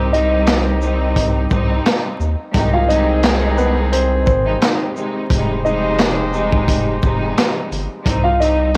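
A gritty, reflective boom-bap hip-hop excerpt in C minor at 87 BPM opens on bowed studio strings with expressive vibrato and portamento, punchy horn stabs set in the background with analog delay, and a round, deep analog bass, all moving through Cm, Abmaj7/C and Fm9 with a light 16th-note swing. A woody upright piano carries the melody with long sustain, while a crunchy, saturated breakbeat kit of tight kick, snare, hi-hat, handclaps and shaker sits up front. Cassette-tape coloring on the drums, piano, strings and horns, plus vinyl crackle and small-room ambience, gives this home recording a warm, lo-fi haze before it cuts off at 8.8 seconds.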